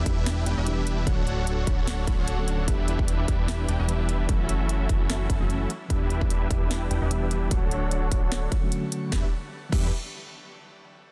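Bittersweet and emotional, this future bass passage, cut from a longer piece, moves at 149 BPM in a swung, half-time 4/4 feel in E dorian, cycling through Em7, Dmaj7 and F#m7 chords. Huge, lush supersaw chords carry the riff, their bright detuned stack colored by cassette tape character, a low-pass filter, tape echo and a filter sweep that runs until 9.1 seconds, all pumping against the sidechain. Beneath them, a mellow tine electric piano plays clean accompaniment through tape echo, while a fat, thick analog bass holds the low end with sustained detuned tones, ring modulation and its own filter sweep. A punchy, layered electronic kick anchors the groove, joined by a trap kit with a sharp snare, crisp hi-hats and crash cymbal, both carrying a touch of small room ambience. The mix is dry, dense and heavily limited, with the kick sitting loudest and the piano, supersaw and bass breathing with sidechain pumping.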